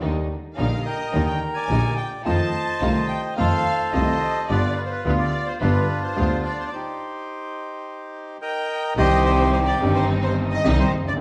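Tango in C minor at 107 BPM, played with a rubato feel, this passionate, sultry passage is cut from a longer piece. A reedy, bright bandoneon carries the melody up front from 0.6 seconds, joined by a lush, expressive violin section on a second line that sits more distant in the mix. Underneath, a smooth, vintage grand piano provides accompaniment while a bowed double bass, focused and rich with vibrato, holds the low end, both sounding from the very start. A studio string section adds stabs in the background, its smooth top colored by vibrato and portamento. The band plays live in one room with a stone-room reverb, and the harmony moves from Ebmaj7 through F7 and G7 to Cm7, with a stop from 6.7 to 9.0 seconds before the phrase settles on C minor.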